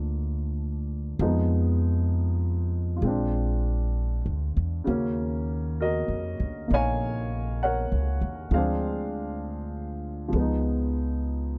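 Jazz ballad fragment, intimate and romantic, with a gently swung feel: a warm, up-front baby grand piano plays chords such as a rootless Gm7, Ebm9 and Db9, while a woody, growly pizzicato upright bass sits close beside it in its low register, both heard throughout under a light reverb.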